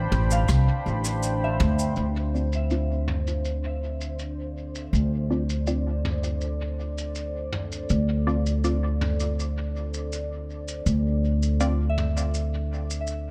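A deep, moody pad of detuned sawtooth layers holds a Dm7 chord in D dorian while a pure FM bell arpeggiates in the background and a woody, thumpy pizzicato upright bass sits up front, opening a meditative ambient dub passage at 81 BPM in a straight 4/4. A vintage brush kit with rolled-off rim clicks, shaker and dub-echoed toms keeps time, joined briefly near the start by a barely audible electronic kick. From 2.3 s a muted, phased chord stab with dub echo fills the gap in the bell's part until the bell returns at 11.9 s, all in a dry, echo-heavy mix cut from a longer piece.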